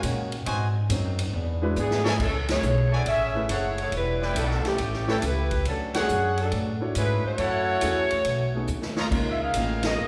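Bathed in a wet, hall-like reverb, this brassy, energetic big band swing passage is cut from a longer piece. A woody, thumpy upright bass sits up front throughout. Alongside it, a distant, roomy drum kit with dark cymbals and a boomy kick keeps the swing going, with drum fills near 1.8 and 8.7 seconds. A clear trumpet section punches out stabs from 0.5 seconds, while a mellow saxophone section with light vibrato and a smooth top carries the loose melody. A baby grand piano comps in the background with short sustain, a boxy, picked acoustic guitar adds accompaniment at the start and close, and band accents punctuate a progression rich in seventh and ninth chords.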